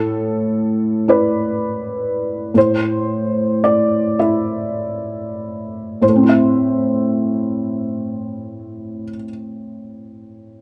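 A felt-muted upright piano, mellow and intimate with its action noise audible up front, plays a fragile, reflective classical accompaniment in a rubato 6/8 that slows through the first 6.0 seconds, moving from a suspended chord to a minor one at 2.5 seconds under light reverb, in a brief passage cut from a longer piece.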